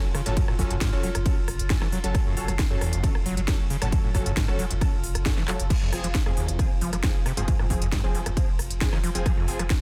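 Cut from a longer driving peak-time techno piece at 135 BPM, this hypnotic clip opens on aggressive, detuned sawtooth rave stabs with chorus, reverb and tape echo, over a deep, saturated sub bass pumping in the background. From 0.1 seconds a squelchy, resonant acid bass riff with distortion and echo joins an overtone-sweeping drone held on F4, alongside a layered techno kit with a cracking snare, smooth hats, claps, rim clicks and cymbals; a heavy electronic kick drives from 0.4 seconds. The harmony moves from Gbm to Fm at 5.7 seconds, just after a drum fill at 5.5, all within a dense, heavily limited modern master.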